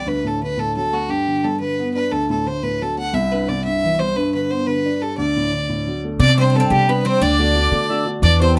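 A clear, biting fiddle carries the melody up front over a dark, mellow baby grand piano in this lively, cheerful Celtic jig in 6/8, cut from a longer piece, and at 6.2 s a picked, metallic Irish bouzouki with slapback echo, a breathy, reedy whistle in the background and a woody pizzicato upright bass join in, captured with close, detailed microphones and moderate studio reverb.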